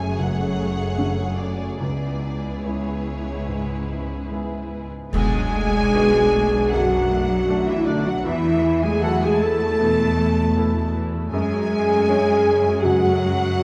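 A cinematic, emotional film score for orchestra, this bittersweet, sorrowful passage moves at 71-80 BPM in 4/4 with a rubato feel, in B dorian. Two bowed violin sections carry the melody and a second line over a lush, vibrato-rich string body, with a close viola section in the background and cello and double bass sections holding down the bass. A distant, roomy French horn section sustains dark chords, while a soft, felt-muted upright piano adds intimate, thin-felt accompaniment from the background. At 5.1 seconds a mellow, distant clarinet joins with a second line, and clash cymbals with concert bass drum mark a brief accent, their bright cymbals ringing until 6.7 seconds. The harmony drifts from F#madd9 through C#m7, Bm7 and Esus4 before returning to F#madd9, all bathed in a wet scoring-stage reverb within a dark production, as this excerpt is cut from a longer piece.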